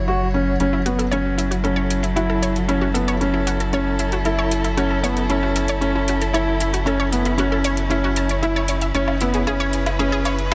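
Cinematic and moving, this piano and strings electronica in F# minor at 115 BPM opens on a close, bowed string quartet holding sustained chords with expressive vibrato over a round, deep analog bass, joined at once by a soft, felt-muted upright piano riff with audible action noise and delay; from 0.6 s a deep house kit of finger snaps, metallic hi-hats and woodblock adds an overdriven edge, and a bright, detuned analog pluck soon spins chorused, delayed arpeggios through the build-up, all set in light digital ambience.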